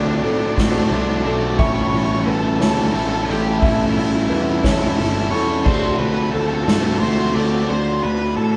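In a slow, straight 6/8 at 59 BPM, this cathartic, melancholic post-rock fragment sets a dark, distorted octave-fuzz lead guitar melody over two overdriven picked guitar riffs in the background, one raw and warm and one bright cranked stack that drops out at 7.7 seconds, alongside a fuzzy, direct electric bass, soft-mallet drums up front from 0.2 seconds with a boomy kick and natural hall tone, a felt-muted upright piano arpeggiating intimately with audible action noise, and a very quiet pedal steel guitar sustaining clean, compressed slide chords, over a D7 to A7 and back progression in a live room's wet reverb.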